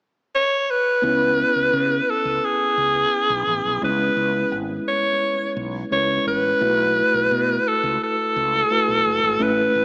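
Nostalgic yet urgent, this short cut from a longer 1980s-style pop piece moves at 86 BPM in C# minor. A raspy, gritty alto saxophone sits up front from 0.3 seconds, playing a punchy, scooped solo melody with vibrato, and at 1.0 seconds a clean tine electric piano and a dark, round fretless bass enter beneath it over C#m7, shifting to B7sus4 at 6.6 seconds. A lush hall reverb and a small-speaker sound give the whole a retro cast.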